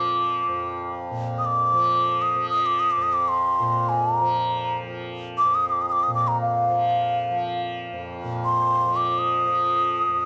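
A breathy, hollow bansuri sits close and up front with tongued notes and vibrato, carrying a longing, solemn melody in raga Bageshri on F in free time over a softly plucked, buzzing, shimmering tanpura drone held low beneath it, all in light reverb, in this Hindustani classical fragment of about 10.3 seconds cut from a longer piece.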